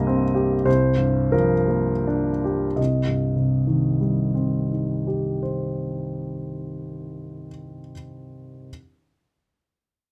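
A clear, intimate grand piano plays alone, up front, with its action noise audible, in this short fragment of a nocturnal, wistful impressionist classical solo in C minor, tuned to A4 = 441 Hz. In a rubato 3/4 at 37-54 BPM, it spans C2 to Eb5, moving from Cm7 to Gm7/C while slowing through the opening 2.8 seconds before settling on C minor. Close, detailed microphones and light reverb keep the natural tone near and exposed.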